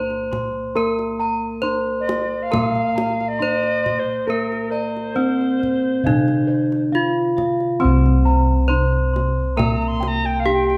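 Shimmering and serene, this Javanese gamelan excerpt sets a bright, ringing bronze metallophone melody up front over a lower metallophone accompaniment, with a second metallophone and round, softly padded bossed gongs weaving high arpeggios while deeper gongs hold the bass in the background. A tight, close kendang enters at 0.1 s, and from 2.0 s a pure, woody alto recorder adds an expressive second line up front, its vibrato and soft attack contrasting with the metal. The band plays live in one room, wrapped in a generous, wet studio reverb.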